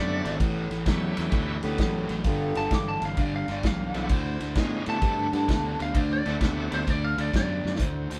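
A lead guitar solo opens this laid-back, gritty electric blues shuffle at 130 BPM in D mixolydian, its twangy, slightly broken-up tone riding over a crunchy riff guitar with harmonic tremolo, a round, punchy fingered bass, and a shouting tonewheel organ with key click, lightly overdriven through a slow rotary speaker. An up-front vintage kit with dark cymbals enters at 0.3 s, soon joined by mellow saxophone section stabs with light vibrato, as the band moves through A9, G9 and D9, playing live in one room with moderate reverb. The organ drops out at 6.8 s, and a drum fill at 7.6 s marks the close of this section cut from a longer piece.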